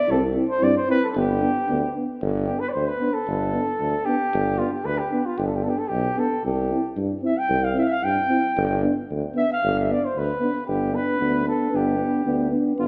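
Festive and wild, this Balkan brass band piece moves at 114 BPM in a straight 2/4 in G mixolydian, cut from a longer work and shifting between C and G chords. A mellow flugelhorn with light vibrato and a soft attack carries the melody up front, taking a solo from 2.2 to 10.7 seconds, while a dark euphonium in the background and a second, smooth-topped euphonium supply accompaniment over a clear, punchy tuba bass with a vintage edge. Everything sits in a moderate concert hall reverb heard from further back in the room, giving the classical-style playing a roomy, distant feel.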